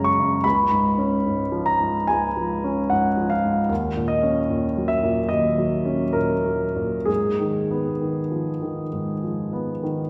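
A solo concert grand piano opens this mysterious, wistful fragment of impressionist classical music in G# minor, its intimate, polished tone carrying deep bass, long sustain and audible action noise as it ranges from C#2 to C#6. The playing is rubato in 4/4 at roughly 63-77 BPM, drifting through C#7, D#m7 and then G#m6 at 7.1 seconds, with the piano tuned to A4 = 438 Hz. The instrument sits present and up front within a wet concert hall reverb with a 2.6-second decay, the recording heard from further back in the room, across a brief 10.1-second passage cut from a longer piece.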